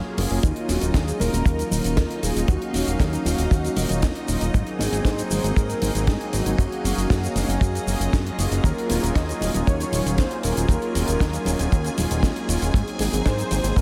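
A straight 4/4 nu-disco groove at 117 BPM in Eb dorian opens with a mellow, slow-attack analog pad, a lush vintage string machine and a thick, dark unison lead all sounding from the very start. At 0.2 seconds a funk kit of hi-hat, shaker and high-tuned snare, very quiet soft-handed congas, and a fat, detuned sawtooth bass with a filter sweep that sits forward in the mix join in, followed at 0.4 seconds by a dry, tight kick up front. Over the chords Ebm7, Ab7 and Gbmaj7, the pad, with chorus, sidechain pumping and delay, holds the harmony, while the string machine, bright but set in the background, adds phaser and ensemble chorus. On top, the unison lead with tape echo carries the melody between Eb4 and Eb5, giving this cosmic, groovy fragment of a longer piece its bold edge inside a light small-room ambience.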